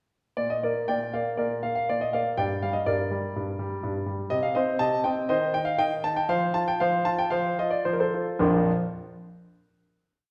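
A classical-period piano sonatina in B-flat major, this short complete piece has a playful, graceful mood and moves at a flexible, rubato pulse of roughly 105-125 BPM in 4/4. A solo concert grand carries everything, its polished, up-front tone pairing a deep bass with a clear, short-sustained upper register that reaches A5. The theme runs from 0.4 to 8.4 seconds, shaping its tune in thirds over broken octaves as the harmony passes from B-flat through G minor and C minor to F. From 3.4 seconds the tempo gradually slows, easing toward a closing B-flat chord at 8.4 seconds. That chord rings on into the church-like hall, whose wet reverb lingers around the piano's clear attack.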